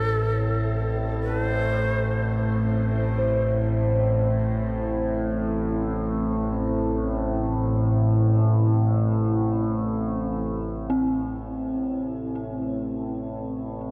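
Dark ambient drone in free time, unsettling and cavernous, cut from a longer piece and bathed in a huge, wet reverb. A resonant drone with moving overtones sits up front from the start, while a breathy, bamboo-toned shakuhachi with vibrato and chiff sings a brief melody until 2.6 seconds, and a deep, moody ambient pad fades in with sustained, detuned chords through shimmer reverb. A metallic bronze singing bowl rings softly in the background from 3.2 seconds, and at 10.9 seconds an eerie, inharmonic FM synth bell enters up front with decaying arpeggios.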